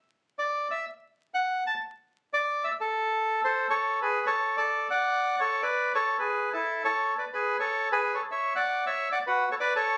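A lone bandoneon, reedy and up front, carries this brief tango fragment in a tense, melancholic mood, its rubato phrasing moving freely over a triple metre. It begins unaccompanied by harmony, then settles into a chordal passage from 3.8 s that passes through rich, colored chords before ending on an unresolved minor sound. The vintage, band-limited tone is wrapped in light reverb and the ambience of a club room, with vinyl crackle and a phone-recorded rawness adding to its worn, intimate feel.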